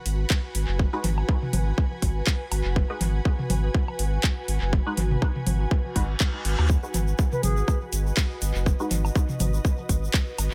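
An echo-heavy, nearly dry mix opens this sparse, hypnotic minimal techno excerpt at 122 BPM in G# minor, with a 56% swing on the sixteenths and a single G#m7 chord throughout. An up-front, overdriven electronic kick drives the groove alongside a round, deep analog bass with a fast attack, both of which sit forward, while the bass pumps against a sidechain. A layered garage kit adds handclaps and metallic, overdriven hi-hats through analog delay, and dry electronic congas, woodblock and toms join at 1.0 s, echoing through the same delay. An ethereal, airy pad with a slow attack and built-in reverb breathes under a chorus and sidechain pumping, while a muted, detuned dub chord stab with a short filter pluck flickers in the background through phaser, chorus and delay. A reverse cymbal sweeps in at 5.9 s, a grainy, bright egg shaker enters softly in the background at 6.7 s, and a brief phrase of pure, wooden baroque flute with vibrato and rolled-off highs drifts through delay around 7.3 s.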